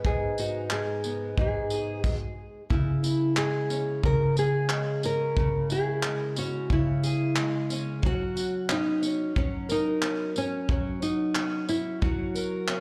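A straight 4/4 groove at 90 BPM is carried by a soft brush drum kit, dark and smooth with a tight kick, a rolled-off top, handclaps, tambourine and a crash cymbal, all set in a small-room sound near the front. This reflective, tender acoustic pop piece is tuned to A4 = 439 Hz and moves from G#m to C#m and then to F#. A fingerpicked acoustic archtop guitar provides the accompaniment with audible finger squeak, double-tracked and given a slapback echo. From 0.1 s, a full-bodied, classical nylon-string guitar carries the melody, also fingerpicked and touched with slapback echo. A brief stop from 2.0 to 2.7 s breaks the flow before the passage repeats. The whole thing sounds like a live gig heard through the venue's PA, with a gentle club reverb framing this warm excerpt cut from a longer piece.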